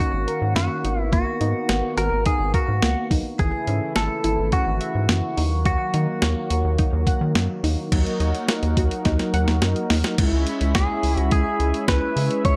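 A bright, twangy clean electric guitar carries the melody up front with analog chorus and slapback echo over a driving, nocturnal synth-pop groove at 106 BPM, where a rubbery square bass and a thumpy, tape-warm 12-bit drum machine push forward, a smooth, warbling analog pad holds chords, a lush unison pluck arpeggiates in the background until 10.1 seconds, mellow synth brass joins at 7.9 seconds, and a drum fill leads into a C#m7 close in this dark, plate-reverbed excerpt from a longer piece.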